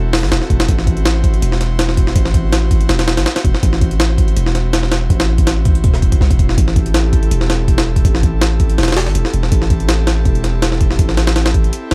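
Frenetic and dark, this drum and bass cut leans hard into jungle, with a light swing on the sixteenths. A sampler-style jungle kit of kick, snare and hi-hat sits up front, compressed, pitched up and overdriven into a gritty crunch, with a thumpy kick and a high-tuned snare. Beneath it, a long, deep 808-style sine bass holds sustained notes with a fast attack and a decaying tail, also placed up front. Much further back, an airy, breathy pad holds soft, bright chords built from triangle and sawtooth tones over a noise layer, easing in with a slow attack and a long release, thickened by chorus and a vintage 12-bit sampler character. The harmony rests on A minor and shifts to A minor seventh at 6.6 seconds, where the drop repeats in this short, dry excerpt from a longer piece.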